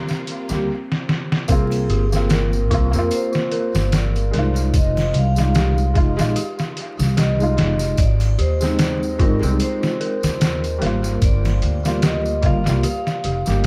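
A woody, pizzicato upright bass with tube saturation anchors this hypnotic, smoky trip hop excerpt at 74 BPM with swung sixteenths, alongside a gritty, pitched-down sampler drum kit and quiet tambourine and triangle in dub echo, while a felt-muted upright piano with harmonic tremolo and audible action noise supports a ringing vibraphone melody carrying 12-bit grit and tape echo, an eerie detuned FM synth bell adds background arpeggios from 1.9 seconds, a lush violin section and a tense bowed-like drone sound only in the opening 0.7 seconds, and the echo-heavy mix sits in a small room with vinyl crackle.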